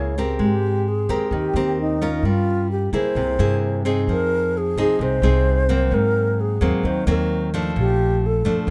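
A mellow alto flute carries the melody in this short bossa nova excerpt, its pure, close-miked tone shaded with vibrato and tongued notes that lend the line a wistful, melancholic cast. Beneath it, a nylon-string guitar plays fingerpicked accompaniment with a bright, full-bodied classical sound placed up front, the occasional finger squeak adding intimacy. An upright bass played pizzicato supplies a woody, thumpy foundation from its dark gut strings. The tempo sits at 130 BPM in a straight 4/4, and the harmony moves through rich chords such as Abmaj9, Gm7b5, C7b13 and Fm7 before arriving on Bbmaj7 at 7.8 seconds. Detailed microphones and light reverb keep the trio sounding close and clear across the full 8.7 seconds.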